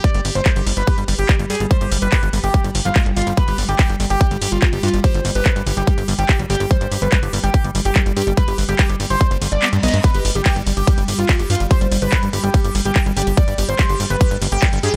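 A driving straight 4/4 pulse at 144 BPM anchors this intense, alien psychedelic trance excerpt in G major, with a punchy, up-front electronic kick and a layered drum and bass kit of handclaps, metallic hi-hats and ride cymbal, while a plucky, funky analog bass with tube saturation and a squelchy, resonant liquid acid bass riff with phaser, tape echo and sidechain pumping sit beneath. Over them a gritty, screaming, guitar-like overdriven synth lead carries the melody through distortion, chorus, phaser and digital delay, and a very quiet, morphing wavetable pad holds detuned, ring-modulated chords. At 9.5 seconds a faint reverse cymbal sounds, and the kick drops out from 9.6 to 10.0 seconds, all in a dry mix.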